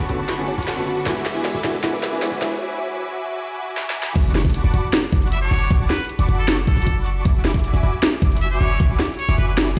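Bittersweet future bass at 155 BPM in a half-time feel opens on huge, detuned, bright supersaw chords over Bm9/F# and E7/F#, pumping against a deep, boomy 808-style bass and an up-front trap kit with a sharp snare and metallic hats, while a clear, worn baby grand piano accompanies and a very quiet, warbling unison pluck adds brief arpeggios; a background riser and impact build through a filter sweep and break until the drop at 4.2 seconds brings a knocking, overdriven electronic kick and a soft, dreamy lead arpeggio, and from 5.3 seconds a nasal, brilliant trumpet with a straight mute sings a solo melody with vibrato, set in a spacious hall reverb.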